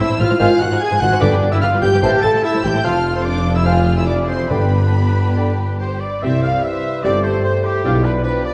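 A lush, expressive violin section carries the melody with vibrato and a soft attack in this restless, dramatic excerpt from a fast romantic orchestral movement in C major at 147 BPM, over a more intense second violin line and an oboe in the background, with a very quiet clear clarinet, a pure-toned flute ensemble and a bassoon joining at 0.4 s. Smooth, even violas fill the middle, mellow French horns hold sustained chords, distant, dark trumpets add tight stabs, and tuba, smooth cellos and woody double basses anchor the bass, while close, dry timpani struck with hard mallets punctuate at 1.2 and 4.5 s. A concert hall reverb surrounds the warm production as the chords move from Ab through Am and F before arriving at C.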